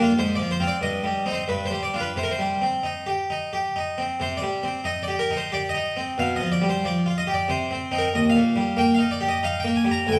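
Flowing and grave, this brief baroque-style suite movement in C minor unfolds in 3/4 at 92 BPM with a rubato feel, as a solo Flemish-style harpsichord, plucked, full and brilliant with its three sets of strings, sounds up front yet heard from further back in a wet recital hall, moving through chords such as Fm/Ab, Cm/G, G7/B and Eb across a repeated opening section in this cut from a longer piece.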